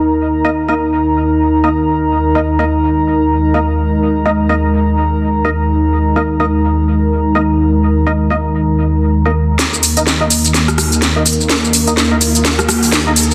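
Aggressive and swaggering, this bass house cut opens on a sweeping, resonant pad of detuned sawtooth chords drenched in lush chorus, layered under a warbly, nostalgic lo-fi pad up high and hollow, organ-like stabs that decay quickly through ensemble chorus and dub echo. At 9.6 seconds a garage drum kit arrives up front for a build-up fill, its cracking, softly clipped snare, crisp hats, rim clicks and shaker carrying a tape-warm, large-room character and a loose 16th-note swing. A faint electronic riser creeps in behind from 11.3 seconds, all within a dense, heavily limited modern master.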